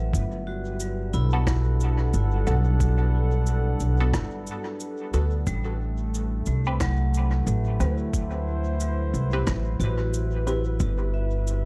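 A woody, thumpy upright bass sits up front in this short, spacious slice of ambient dub in A dorian, moving at 90 BPM in 4/4 with a 16th-note swing of 60%. Behind it, a warbly, nostalgic tape-like pad holds sustained chords, its detuned sawtooth and triangle tones softened by chorus and built-in reverb, while a vibraphone struck with hard mallets spins metallic, ringing arpeggios through dub echo with a slow motor vibrato. A muffled, overdriven electronic kick thumps in the background, and gritty, saturated cabasa and rim click add a rolled-off texture, also sent into the echo. From 1.3 seconds a filtered dub chord stab enters, its deep, muted pluck coloured by a phaser, subtle chorus and echo, dropping out at 10.7 seconds. The harmony rests on Gmaj9, shifts to Am9 at 5.5 seconds and lands on G, all inside a small room in a hazy, echo-heavy mix.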